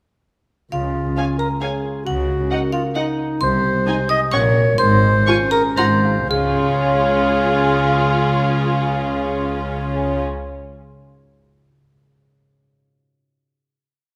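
Cinematic, playful film cue in 3/4, magical and quirky, where a dry, boxy xylophone carries the tune, doubling it at the octave and in sixths, beside an up-front classical clarinet second line and ringing, fingerpicked harp broken chords, all from 0.7 s. From 1.2 s, two dark, distant violin sections add a lush sul tasto melody and second line with vibrato, while a rich, floating viola section plays after-beat and sustained chords over a soft-attack cello section on the beats and a double bass section doubling that bass line. The cue slows down until a held final chord at 6.3 s, bathed in a moderate scoring-stage reverb.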